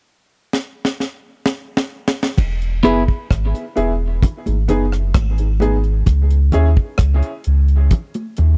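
A dry, acoustic reggae drum kit opens this meditative dub fragment, cut from a longer piece, with a drum fill from 0.5 seconds that brings in a high-tuned snare, tight kick, rim clicks, hi-hat and crash. At 2.4 seconds a round, sine-like sub bass arrives up front, its fast attack and sustained, mellow tone giving the groove a deep floor beneath the kit. Bright, damped congas with a thin skin sit in the background, thinned by a high-pass filter and trailed by tape echo. A clean, compressed electric guitar offers a brief picked figure, while a dark, worn upright piano plays woody, boxy stabs with audible action noise and a slightly detuned character, both also filtered and fed through tape echo. The harmony moves from E to G sharp minor before dropping out, and a filter sweep colours the final stretch from 6.1 seconds, all within a close, 1970s-style studio sound.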